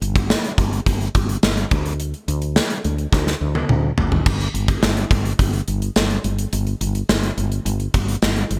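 A straight 4/4 pulse drives this moody, nostalgic slice of 1980s-style pop, built from a gated drum kit and a fretless electric bass that both play through the whole 8.6 seconds. The drums sit up front in a stone room, their gated reverb framing a punchy kick, medium-tuned snare, bright cymbals, hi-hat, tambourine and toms, with a fill from 3.1 to 4.3 seconds leading into the second passage. Beneath them the woody, growly fretless bass holds a low, round line, also close and present, all within a bright digital production touched by light reverb.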